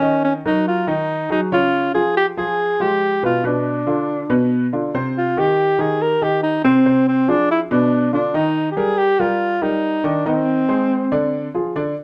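A straight 4/4 pulse at 141 BPM drives this sultry, fiery jazz fragment, cut from a longer piece and tuned to A4 = 441 Hz, with chords moving from Ebm through Bdim, Cm and Ebadd9 before landing on Dm7b5. A breathy alto saxophone carries the melody up front, its whispered, intimate tone marked by vibrato, a soft attack and a smooth top, while a clear concert grand piano accompanies with a worn character, deep bass and short sustain. A wet club reverb and a dark, warm production give the brief passage a close, smoky atmosphere, with the saxophone stopping at 11.5 seconds and the piano at 11.9 seconds.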